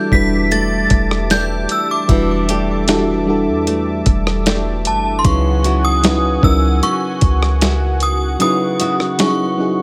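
Late-night and longing, this contemporary R&B passage, cut from a longer piece, moves in a straight 4/4 feel. A chiming, inharmonic synth carries the melody high above, its ringing FM tone shimmering through ensemble chorus, tremolo and delay. A mellow, round FM electric piano with a faint noise layer supplies dark, chorused accompaniment, while a smooth, detuned sawtooth pad holds sustained chords with a long release. A bright, fingerpicked flamenco guitar plays arpeggios with audible finger squeak. Up front, a deep, boomy 808-style bass sits beside a gritty, compressed sampler-style drum kit of thumpy kick, medium-tuned snare, rim click and hi-hat; the bass stops at 8.4 s, and the kick falls silent from that point. The harmony shifts from Em11 to C#m11 at 5.2 s, the whole set in a light reverb.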